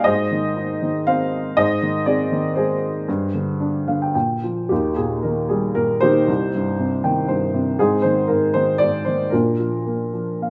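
A warm, woody, up-front upright piano plays alone in this sunny, lyrical classical passage in 3/4, moving with a rubato feel at around 106-122 BPM, ranging from C2 to G5 with short fills at 3.6 s and 6.8 s as the harmony moves from Ab toward a settled Eb major from 4.7 s through Cm, Ab and Bb, all carried by a moderate scoring-stage reverb.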